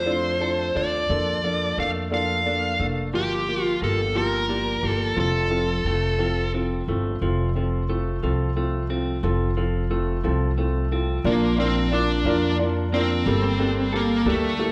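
A dark, smooth overdriven lead guitar carries the melody up front in this heartfelt, swaying six-eight pop ballad at 59 BPM, falling silent at 6.5 seconds and returning at 11.3 seconds for the closing phrase. Beneath it, a clean, compressed semi-hollow electric guitar picks arpeggios with a hollow-body glow. A felt-muted upright piano adds soft, mellow accompaniment close to the ear, its audible action noise lending an intimate feel. The pizzicato upright bass sits up front with a woody, growly, thumpy tone from its steel strings. The harmony moves from F6 through Bbmaj7/F and Gm7, ending on Bb and Gmadd9, all set in a moderate recital-hall reverb in this excerpt cut from a longer piece.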